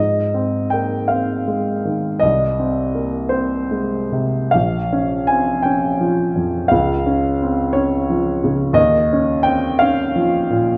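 A smooth, vintage grand piano sits up front in a moderate recital hall reverb, its warm tone carrying this tender, dreamy romantic nocturne. Played solo in a rubato 12/8, the piano spans from deep bass to the upper middle register as the harmony moves from Ab through Ab/C, Bbm and Dbmaj7 before arriving on Ebsus2 near 8.8 seconds. This short passage is cut from a longer piece.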